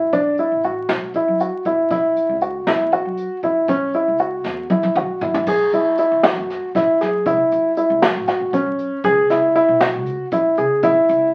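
A present, long-sustaining grand piano opens with arpeggios over a woody, thumpy pizzicato upright bass on gut strings, all heard through the crackle of a very old 78 rpm record in a wet studio ambience. This brooding, intricate progressive instrumental moves in 7/8 at 236 BPM (eighths) in F# minor, with a brushed jazz kit behind the bass and piano, dark and smooth with boomy kick, dark cymbals and a rolled-off top. A drum fill from 4.5 to 5.5 seconds leads into a new section as the harmony shifts toward F#7sus2 and then C#m.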